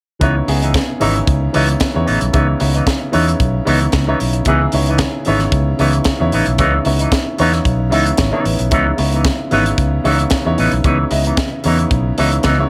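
A clear, intimate grand piano with audible action noise sits up front over a C#m9 chord in this glamorous, danceable disco cut at 113 BPM in C# minor, adding a fill from 7.7 to 8.7 seconds while a bright, twangy electric guitar through an envelope filter, a dark, round, punchy fingered bass and a tight funk drum kit with a high-tuned snare drive the straight 4/4 groove in light studio reverb.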